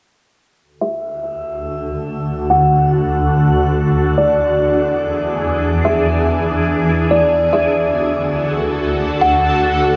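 A shimmering ambient pad sits up front in this dreamy, blissful hip hop fragment, holding sustained chords in D lydian with a bright, ethereal glow built from detuned unison sine tones, an octave-up shimmer and a granular texture. It enters at 1.6 s on a slow attack and lingers with a long release, coloured by chorus, phaser and its own reverb and softened by a low-pass filter. A kalimba opens the piece at 0.8 s, playing alone briefly before the pad arrives, and carries a short melody. Its thumb-plucked, woody tone is mellow and dark, ringing smoothly through a low-pass filter and a digital delay. The music floats in free time over a D chord that moves to E7 and returns to D, while a filter sweep runs through the whole passage and a moderate shimmer reverb surrounds both parts.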